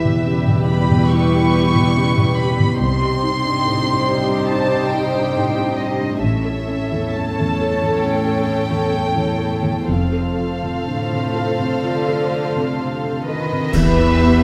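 Wet recital-hall reverb surrounds this moving, sorrowful excerpt of cinematic film score, which drifts in rubato at 61-72 BPM in 4/4 through Em, Cm, A and F. A rich, sul tasto violin section carries the melody above a pure, floating second violin line, with woody violas in the background, a felt-muted upright piano adding mellow, thick-felt accompaniment, and intimate, vibrato-tinged cellos and double basses grounding the bass. At 9.9 s a dark cymbal swell, clash cymbals and concert bass drum enter close and dry, leading to an ensemble accent at 13.7 s as the harmony returns to Em.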